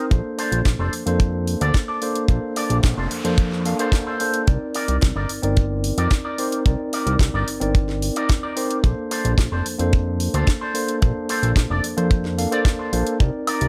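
The sound is close and dry, with little reverb, giving this short section cut from a longer nu-disco track a sleek, cosmic feel at 110 BPM in a straight 4/4. A tight, polished kick sits up front, while a layered electronic house kit adds a cracking snare, bright hats and a woodblock, all pushed into overdrive. A fat, detuned analog bass with a saturated, wave-folded edge and a plucky filtered attack holds the low end. A tine electric piano, played through its built-in speakers, carries the chords with vintage 12-bit sampler grit, sidechain pumping and slapback echo. The harmony moves from Bbmaj9 to Cm9 at 4.5 seconds and back at 8.8 seconds. Over it, a twangy, picked electric guitar run through an envelope filter plays a riff coated in lush chorus and slapback echo, and a faint noise sweep sounds in the background from 2.7 to 4.5 seconds.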